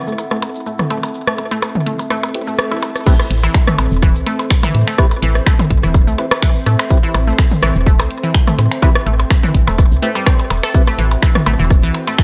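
Lightly reverberant and tape-tinged, this quirky, hypnotic minimal techno excerpt has its drums re-recorded in a small room. A woody, round FM bass and a squelchy, resonant blip pluck ride a sidechain pump, the pluck carrying a filter sweep, chorus and tape echo, while a bubbling stepped-filter texture murmurs very quietly with random resonant steps. Behind them, a warbly, nostalgic pad drifts with lo-fi chorus and its own reverb, pumping with the others. A house kit of cabasa, crash, finger snaps and hi-hat mixes with a minimal click kit of blips, rim clicks and toms sent through digital delay, both lightly swung. Around 2.3 seconds, a background electronic swell enters and a hollow, nasal organ stab starts punctuating from the back of the mix with analog chorus and delay. At 3.1 seconds the drop lands with a punchy, layered electronic kick pressed up front, driving the groove over a steady A minor center.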